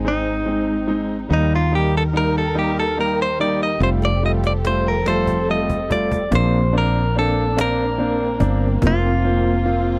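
A twangy, clean electric guitar carries the melody over intimate grand piano with audible action noise, lush bowed strings in the background and a growly, round fretless bass in this tender, swaying six-eight pop ballad excerpt, with a snappy, dry cajon entering at 3.8 seconds with a fill that runs to 6.3 seconds, all in a close 1970s-style studio sound with light reverb.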